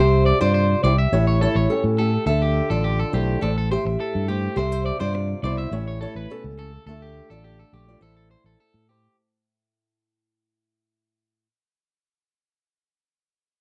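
A straight, danceable 4/4 groove at 104 BPM drives this sunny highlife guitar band fragment, where a round, punchy fingered electric bass sits up front under a fingerpicked steel-string acoustic guitar melody, a twangy, slightly broken-up electric guitar playing arpeggios with slapback echo, and a thumb-plucked flamenco guitar with audible finger squeak in the background, all cycling through C, A7, Dm and Am in a dry, close 1970s-style studio sound that fades out from the start, with the flamenco guitar lingering alone until 11.5 seconds.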